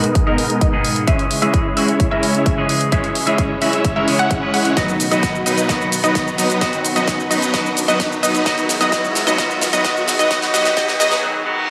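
Festival progressive house at 130 BPM in straight 4/4, this anthemic, emotional excerpt is a build-up cut from a longer piece, moving through G#madd9, C#m, B and Eadd9. Huge, detuned supersaw chords carry the riff up front under a filter sweep, with sidechain pumping and dub echo, while a thick, warbling vintage pad holds sustained chords in the background through chorus. A bright, twangy clean electric guitar picks out accompaniment with dub echo, and a punchy detuned unison pluck with a noise layer traces arpeggios behind it, both pumping with the sidechain. A punchy, layered electronic kick drives from 0.2 s, and the big-room kit adds hi-hat, shaker and a massive snare, rolling into a drum fill at 4.8 s. A very quiet riser and reverse cymbal creep in from 3.2 s, and at 11.2 s most parts drop for a brief break carried by the reverse cymbal and the ringing guitar, all set in a wet digital room reverb.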